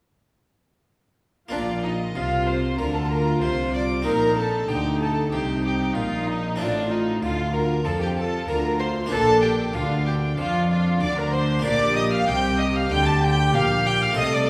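Festive and brilliant, this baroque-style concerto movement with solo episodes moves at 95 BPM in a straight 4/4 in Bb major, cut from a longer piece. From 1.5 s to 14.5 s the full ensemble plays together: a solo violin with a rich, reedy gut-string tone and light vibrato carries the melody, joined by a chamber violin section soaring higher with a smooth top. A second violin section in the background supplies a second line, while a viola section with period-style warmth fills in the accompaniment. A bright, airy Flemish-style harpsichord plucks its accompaniment in the background, and the cello and double bass sections anchor the bass, the cellos sounding distant. The harmony moves from Bb through Cm7/Bb, F/A and back to Bb before Gm/Bb, all heard from further back in a wet recital hall with a 1.4-second reverb tail.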